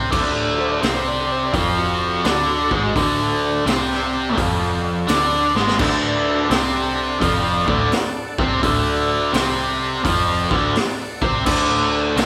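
A live, one-room sound with moderate large studio reverb frames this gritty, swaggering cut from a longer blues rock and southern rock power-trio piece, swinging at 85 BPM in D mixolydian over a D chord. Up front, a bright, double-tracked overdriven electric guitar riff leads, backed by a round, foam-muted vintage bass, a punchy, saturated garage drum kit with a high-tuned snare and rolled-off top that plays a fill at 5.4 seconds leading into the second section, and a very quiet, thick tonewheel organ holding sustained chords through a slow rotary speaker. A dark, smooth lead guitar with its own drive adds a second line in the background from 0.6 to 3.2 seconds.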